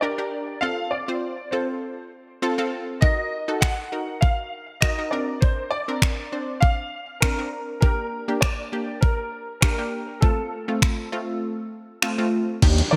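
Bright, 1980s-style digital production with light reverb carries this upbeat, summery dance-pop excerpt, where a polished grand piano melody, treated with ensemble chorus and delay, rides over a round, detuned analog pluck that pumps with sidechain compression through Gm, F, Ebm and Bbadd9 harmony. A crisp 8-bit drum machine arrives at 3.0 s, overdriven and bathed in gated reverb, its thumpy kick, finger snaps, hi-hat and crash sitting up front until the kick drops out at 11.4 s. At 12.6 s a glossy, chorused synth bass and an electronic downlifter appear.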